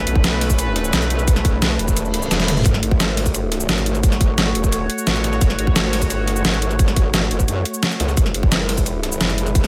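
A growling, distorted bass and a bright, detuned sawtooth pad open this tense, dark drum and bass piece at 174 BPM in F# minor, cut from a longer track. The bass sits up front, aggressive and wobbling through a formant filter with chorus. The evolving pad holds slow-attack chords with chorus, vintage 12-bit sampler grit and sidechain pumping. A tight electronic kick and an overdriven dubstep kit, with a deep snare, bright hats, shaker and toms, drive the groove in a straight 4/4. A very quiet, high-tuned breakbeat kit of hi-hat, ride and snare adds compressed grit underneath. A faint reverse cymbal and zap arrive at 2.1 seconds, followed by a short drum fill at 2.3 seconds, and the harmony moves from Aadd9 to F# minor at 2.7 seconds and to E at 8.2 seconds, all in a dry, close mix.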